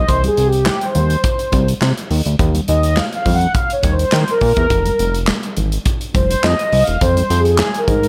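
A straight 4/4 groove at 104 BPM drives this short, funky and danceable cut of early-eighties boogie funk in F minor, taken from a longer piece. A modern studio drum kit sits up front with a punchy kick, a medium-tuned snare, hi-hat and handclaps, all set in a pumping studio room with gated reverb, while very quiet congas add a bright, thin-skinned, close and dry layer of soft hand percussion. Underneath, a fat analog bass spans E1 to Eb3, its thick, detuned sawtooth and triangle tones coloured by ring modulation, saturation and a filter sweep that keeps the sound evolving. Mellow synth brass, brassy and round with a dark edge, a filter swell and chorus, carries the accompaniment in the G4 to Gb5 range, and an analog polysynth solo runs across the whole passage. The harmony moves from Cm to Ebsus2 at 2.1 seconds and lands on Fm at 4.7 seconds, all under a light reverb.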